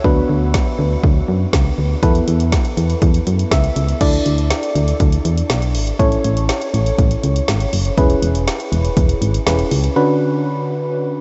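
A straight 4/4 pulse at 121 BPM drives this upbeat, nostalgic synth-pop excerpt, with a punchy deep house drum kit of kick, woody snare, dark hi-hat and crash cymbal, re-recorded in a small room, sitting up front until 10.0 s alongside a round, digital FM bass that drops out at 9.9 s. A mellow FM electric piano with a noise layer carries the chords from Bm/D through Esus4, Dsus2, A and E6 to Bmadd9/D, adding a short fill from 3.3 to 4.0 s before the second section. The whole mix is dreamy and soaked in a huge ambient reverb, its top end rolled off above 8.0 kHz.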